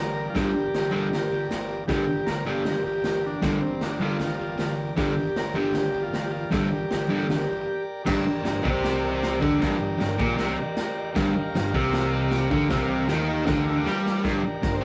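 Garage rock with a menacing, raw edge, cut from a longer piece: a bright, double-tracked fuzz guitar riff sits up front over fuzzy overdriven picked bass and a gritty drum kit with a boomy kick and dark cymbals in a small, pumping room, while one buzzy vintage combo organ holds clean sustained chords and another carries a lightly vibrato-tinged melody until 7.8 seconds, returning briefly at 14.6 seconds after a drum fill near 13.9 seconds, the whole take captured as a rough rehearsal-room recording with reverb.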